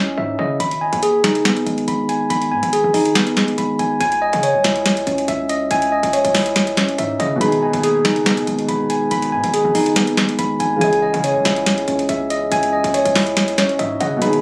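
A half-time trap groove at 141 BPM in 4/4 drives this melancholic, dark hip hop excerpt, with a booming analog drum machine entering at 0.6 seconds after a brief break, its crisp snare, metallic hats and finger snaps sitting up front with the character of a small room. Underneath, a hard-hitting 808-style bass runs from the start, punchy and heavy, with a sine body, a noise layer, a fast attack and a decaying tail. A tine electric piano plays arpeggios throughout, warm, clean and placed up front, heard as if through built-in speakers, softened by a low-pass filter and trailed by digital delay. At 7.4 seconds a felt-muted upright piano joins as accompaniment, soft, muted, mellow, intimate and warm with a vintage, smooth tone, also filtered. The harmony moves between C#madd9 and G#m, and the whole is dry and compressed, captured on a phone amid studio ambience.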